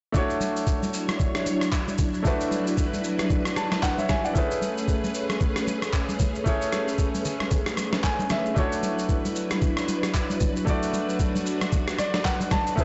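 The recording sounds blown-out and overdriven, with its top end rolled off above 7.9 kHz and a light digital ambience around it, giving this relaxed, soulful amapiano cut a hazy, saturated character. At 114 BPM in 4/4 with a swung sixteenth-note feel in D lydian, a gritty, pitched-down sampler-style drum kit sits up front, its thumpy kick, medium-tuned snare, handclaps, rim click and shaker compressed and re-recorded in a large room. A bright, polished concert grand piano carries the accompaniment with brilliant, short-sustain voicings and deep bass, adding fills at points such as 3.3 seconds and 11.7 seconds. Alongside it, a silky vintage string machine enters at 0.5 seconds, holding mellow, full-bodied chords with a slow attack and ensemble chorus. Damped, thin-skinned congas play close and dry in the background, while the harmony moves from Dmaj9 to Amaj9 and back to Dmaj9 across this short fragment of a longer piece.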